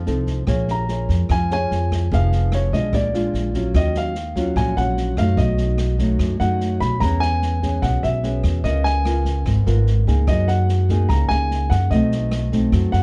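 Dark and dry, with little reverb, this smooth, melancholic bossa nova in Bb minor moves at 147 BPM in a straight 4/4. The upright bass sits up front, plucked pizzicato on steel strings with a woody tone. Beside it, a small, warm nylon-string guitar is thumb-plucked as accompaniment. An open jazz drum kit, set low in the balance, has a natural small-room sound and plays kick drum, rim click and a medium-tuned snare, with the kick coming across boomy. At 0.7 s a warm baby grand piano enters with a natural-toned melody between Db5 and B5. The harmony runs Bbm7, Fm7b5 and Bb7 before a second section at 3.7 s passes through Ebm9, B7, E6, Db13 and Gb69, and this cut from a longer piece closes on B7b9.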